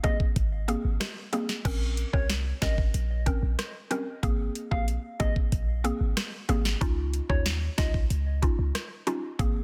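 An up-front electronic afro-pop drum kit with a knocking kick, sharp snare and metallic hats, re-recorded in a large room, drives this bouncy, sunny dancehall excerpt at 93 BPM in 4/4, joined from 0.4 s by a deep, boomy 808-style bass, while a woody, mellow FM synth pluck provides accompaniment and a round, gentle, keys-like lead with tape echo carries the melody until 7.9 s, both pluck and lead treated with chorus, and tight, high-tuned bongos sit in the background, the piece moving through Abadd9, Bbmadd9 and Dbadd9 chords in a dense, heavily limited modern master.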